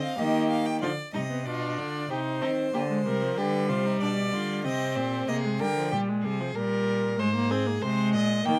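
Two bowed violins and a viola begin together in this lively yet stately baroque-style string quartet fugue, heard in a passage cut from a longer piece and recorded with close, detailed microphones and very little reverb, with the cello entering at 0.2 seconds. The melody violin is clear, smooth and even with vibrato before stopping at 5.9 seconds, while the second violin sounds rich and up front, the viola focused, and the cello intense with a smooth top as it carries the bass. The harmony moves between C minor and G before landing on Abadd9 at 7.2 seconds.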